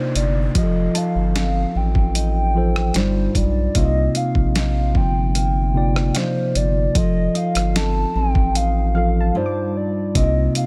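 A straight 4/4 groove at 75 BPM rides on a gritty, sampler-style soul drum kit with a thumpy kick, snare, rim clicks and hi-hat, and a deep, round analog bass, both entering at 0.2 seconds and both up front in this longing, sensual contemporary R&B piece in C dorian, cut from a longer track. A hollow, woody clarinet-like synth lead with chorus and vibrato carries the melody over a mellow tine electric piano and fingerpicked nylon-string guitar arpeggios, while a soft pluck with tape echo sits in the background and an electronic downlifter stops at 3.8 seconds. The chords move through Cm11, F7 and G7b13, with a break on G5 at 9.4 seconds before landing on Cm7, in a dry, close sound.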